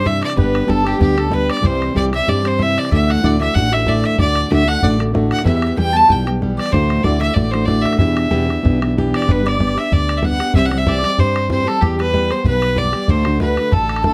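Swinging lightly at 189 BPM in 4/4, this rollicking, bright Celtic reel sets a clear, nasal fiddle up front on the melody over a very quiet, mellow mandolin second line, a full-bodied fingerpicked jumbo acoustic guitar, a dark, punchy fretless electric bass and a tight, dry bodhran entering at 0.1 s, all in a small room as the music moves from E minor into G major at 9.3 s.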